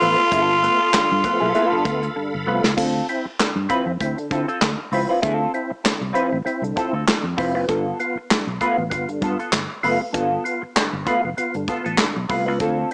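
A loping 4/4 funk groove at 98 BPM with a light swing on the sixteenths sets a cool, sly mood in this short excerpt from a longer piece. A raspy, gritty tenor saxophone sits up front with light vibrato for a brief phrase, while a bright, reedy tonewheel organ holds chords through a slow rotary speaker with audible key click, both dropping away within the first 2.7 seconds. Alongside them, a dark, clean semi-hollow guitar sits up front through wah and analog chorus, and a second tonewheel organ punches out lightly overdriven stabs with third-harmonic percussion and a stopped rotary speaker. A fingered electric bass gives a punchy, amped low end, and a soft brush kit with handclaps, hi-hat and crash keeps things intimate, capping the opening with a drum fill before the harmony moves from G9 to Dm7 at 2.8 seconds and back to G9 later. A moderate studio reverb and a small-speaker coloring give the whole track a boxy, lo-fi tint.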